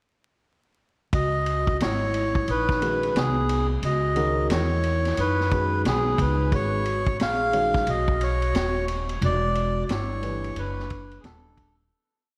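A reedy, breathy melodica carries a song-like motif through tape echo over a ringing vibraphone harmony line mostly in sixths in this smoky, cool jazz-hop piece at 89 BPM in C# dorian, with a woody upright bass walking with chromatic approach notes, a vintage drum kit laying a boom-bap beat with punchy kick and high-tuned snare under a swung ride cymbal, and a worn grand piano entering at 2.8 s for quartal free comping through a lush chorus in the background, all moving from C#m11 to G#m11 to Em9 in a dreamy, plate-reverb-soaked mix with vinyl crackle that fades out from 9.2 s to 11.9 s.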